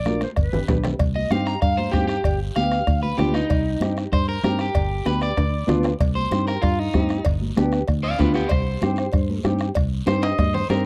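A warm, vibrato-laden clarinet sounds only until 0.8 s over a round, dark fingered electric bass, as a thumb-plucked nylon-string guitar, soft-beater bombo, quiet high-tuned congas, a raspy background guiro and ringing cowbell and timbales set a fiery, driving cumbia groove. From 1.2 s a slightly broken-up, picked electric guitar with spring reverb takes the lead for a solo over minor-key chord changes, with a drum fill near 5.4 s. The sound is dry and close, like a 1970s studio session, and this is a cut from a longer piece.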